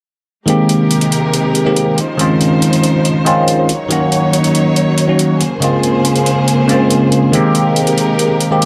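A bell-like tine electric piano sits up front in this bright, euphoric future bass excerpt in Ab major, its clean tone colored by phaser and tape echo as it carries the chords through Abmaj9, Dbmaj9, Ebm7 and Bbm9 at 140 BPM in a half-time feel. Beneath it, a studio string section holds smooth, vibrato-laden sustained chords, while an overdriven electronic hi-hat adds a metallic, layered texture. The dark production is set in a moderate digital room reverb, and all three parts play together from 0.5 to 8.7 seconds.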